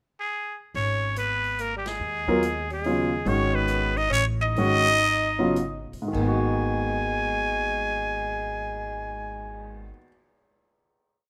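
Swinging in 3/4 at 100-144 BPM and slowing between 3.3 and 6.1 seconds, this intense, searching modal jazz piece in G# minor puts a nasal, raspy straight-muted trumpet melody up front over woody two-feel pizzicato upright bass, a vintage drum kit keeping time on the hi-hat in the background, and a smooth-topped tenor saxophone second line with octave doubling, while a warm grand piano joins at 2.3 seconds with syncopated quartal comping before the band settles on a final chord in a rough home-demo mix.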